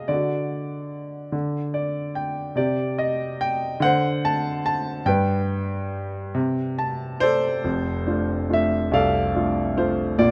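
Closely miked with a light reverb, this short, tender passage cut from a longer classical piece features a smooth, vintage-toned grand piano up front, playing alone in a rubato 6/8, with fills at 1.3 and 6.3 seconds before a new section begins at 7.7 seconds.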